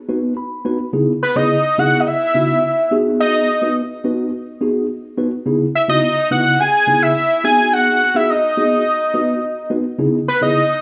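A mellow, clean tine electric piano opens this slick funk excerpt with a short fill at 0.1 s, then comps through a rootless G#m7 and C#m9 in C# minor at a straight 106 BPM in 4/4. From 1.2 s a fat, detuned sawtooth analog lead with a sub octave and filter sweep carries the melody up front, its sustained notes set off by a slapback echo and sitting a touch louder than the keys. A light small-room reverb gives the funky groove a close, polished sheen.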